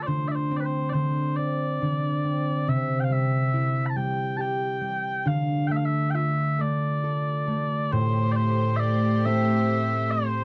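In a rubato 6/8 metre, this mournful, haunting Celtic slow air, cut from a longer piece, sets mellow, sweet small bagpipes up front on a continuous solo melody with vibrato, over a fingerpicked concert harp whose ringing acoustic accompaniment moves through Csus2/D, C and Dm. At 7.9 seconds, as the harmony shifts to Am7, a rich studio string section joins with soft-attack, pure, floating bowed chords. The sound is dry and close, in the manner of a 1970s studio recording, with little reverb.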